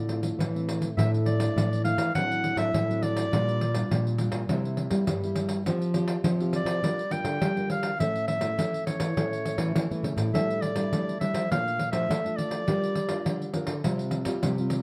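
A clear clarinet carries the melody up front in a classical solo style, set in plate reverb and ranging from C#5 to G5 until it drops out at 13.5 seconds. This is a lively, bittersweet piece of samba and choro at 103 BPM in a straight 4/4, cut from a longer performance. Two thumb-plucked nylon-string guitars support it, one playing accompaniment and the other a bass line that sits a touch louder in the mix, both with an acoustic, classical character and a warm tone, with finger squeak audible on one of them. A jingly, vintage-sounding pandeiro enters at 0.1 seconds, band-limited but placed up front. The harmony moves from Dm7 through Gm7/Bb, C7 and Bbmaj7 before resting on Csus4, all within a dark production with light reverb.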